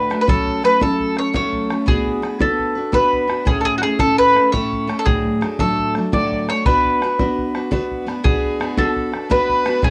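Driving and wild, this short cut from a longer Celtic slip jig rolls along in a straight 9/8. A bowl-back mandolin carries the melody up front, its doubled strings giving the picked line a warm, rounded edge. Beside it, a picked steel-string dreadnought guitar lays down a warm accompaniment, also up front, with a bodhran entering at 0.1 seconds to add an open, boomy pulse in a small-room space. At 8.2 seconds, as the opening strain comes around again, a lone bowed fiddle slips in far in the background with an earthy, rich tone. The home cassette recording lends the pitched instruments a homespun grain, set in a moderate booth ambience, while the harmony moves from F#m through Bm, A and D before settling back on Bm.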